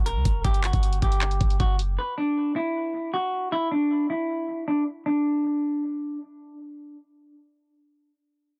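Dark and melancholic, this short hip hop passage, cut from a longer trap track, moves with a half-time feel. A clean, hollow-bodied semi-hollow electric guitar carries the melody up front, its fingered notes trailed by tape echo. Beneath it, an 808-style bass supplies deep, boomy sine tones with a fast attack that decay into a mellow rumble. The electronic trap kit of knocking kick, bright hi-hats and handclaps sits forward in the mix, with soft clipping on the snare, but drums and bass drop away by about 2 seconds. The guitar then carries on alone until 6.2 seconds, inside light reverb and a dense, heavily limited modern master with a low-pass filter.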